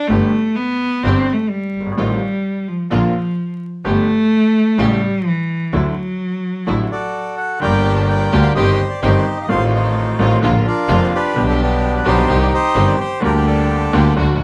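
A bowed solo cello opens this sultry, melancholic tango fragment, its warm, focused tone carrying vibrato and a smooth top up front as the second line. Beneath it, a bowed double bass sounds rich and nasal with a boxy, even quality. A clear upright piano, woody and slightly detuned with long sustain, supplies the accompaniment, while a dark chamber string section adds soft-attacked, expressive stabs at a lower level. At 6.9 seconds a reedy bandoneon enters up front with the melody, and the cello drops out at 7.2 seconds, just before the harmony settles into G minor at 7.6 seconds. The rubato feel sits around 128 BPM in 4/4, with moderate studio ambience and a layer of vinyl crackle over the whole.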